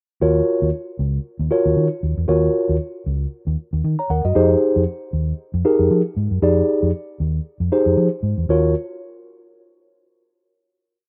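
A fat, foam-muted electric bass sits up front in this short, late-night piece of early-eighties boogie funk, playing a punchy, syncopated boogie line with chromatic approach notes in a dark, round, amped tone. Beside it, a mellow tine electric piano, heard through its built-in speakers and also placed up front, pushes clean rootless chords and slips in short fills. Both parts play from 0.2 seconds to 8.7 seconds over a relaxed swing on the sixteenths in 4/4. The verse moves from Ebm9 to Fm9, and a final Ebm9 chord arrives at 8.5 seconds. A light reverb surrounds the rough home-demo mix, whose dull top end gives the funky groove a cosy, intimate feel.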